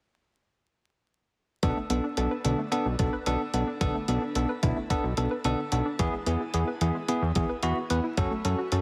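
Synth-pop in B dorian at 110 BPM, this cool, driving fragment from a longer piece runs from 1.6 to 8.8 seconds over Bm7, E and F#m, with a bell-like tine electric piano up front under shimmer reverb, a round, detuned analog pluck spinning arpeggios in the background through chorus, tape echo and shimmer, a fat sawtooth bass with a filter pluck, and a detuned 8-bit drum machine with a thumpy kick and hi-hat, all set in a heavily compressed radio sound with vinyl crackle and a moderate plate reverb.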